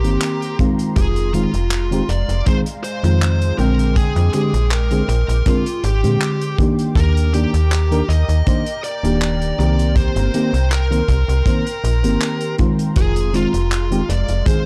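Dry, gritty and faintly tape-worn, this short vaporwave excerpt sits in a studio reverb and carries a melancholic, nostalgic mood at a straight 80 BPM in F dorian. A snappy, metallic slap-like FM bass sits up front and anchors the low end, joined at 0.6 s by a punchy acoustic kick drum, while a studio kit adds handclaps and hi-hat underneath. A mellow FM electric piano, round and full-bodied with a soft noise layer, lush chorus and cassette tape coloring, carries the accompaniment through chords moving from Cm7 and Fm7 to Bb13 and Ebmaj7 before returning. Behind it, a bright, detuned unison pad holds sustained chords in the background with chorus and phaser. Over the top, a dark, high-gain distorted lead guitar plays the picked melody through an analog delay, giving the hazy texture a smoky, brooding edge.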